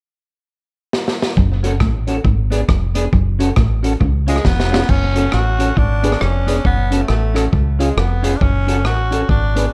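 Ska at 136 BPM in F# harmonic minor, energetic and driving, with a swung eighth-note feel and a dark, lightly roomy production in this short cut from a longer piece. A crunchy breakbeat drum kit comes in at 0.9 seconds with a fill, its saturated, gritty sound up front with a tight kick and dark cymbals, while a deep dub fingered bass joins at 1.4 seconds, round and punchy, anchoring the low end. Behind them, a clean semi-hollow guitar plays accompaniment and a smooth tonewheel organ adds stabs through chorus vibrato and a slow rotary speaker, both set back in the mix. A mellow, fingered electric guitar riff with lush chorus and analog delay sits low in the background until 4.6 seconds, just as a second drum fill leads into the next section. From 4.3 seconds a raspy tenor saxophone takes the melody with light vibrato and scooped notes over a cycle of F#m, G#dim and C#.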